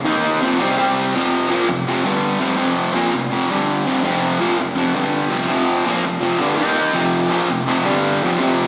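Heard through a venue's PA in a recital hall, this live rock recording has a small-speaker sound wrapped in a lush hall reverb that lingers for about 2.7 seconds. A lone fuzz guitar carries the whole clip, an electric, double-tracked part played up front with a bright, picked bite, distortion and an analog delay trailing its notes. At a straight 165 BPM in 4/4, the mood is gritty and swaggering. A brief opening moves through Eb5, F5 and C5 chords before a new passage begins at 1.1 s, built on F5 and G5 with a return to Eb5 near the end. The guitar ranges from F2 to Eb4, and the clip is cut from a longer piece, stopping at 8.7 s.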